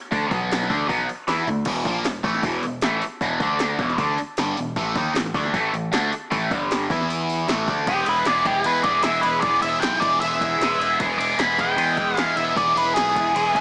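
A small-speaker sound soaked in moderate spring reverb carries this swaggering, raw garage rock excerpt in E mixolydian at 154 BPM, where a bright, overdriven, double-tracked stack guitar riff with phaser sits up front over a warm, direct picked bass and a punchy, overdriven analog drum machine that rolls through a fill at 1.3 seconds and drops its kick and snare at 7.7 seconds. At 7.9 seconds the band is joined by a dark, up-front octave-fuzz lead guitar melody reaching as high as D6.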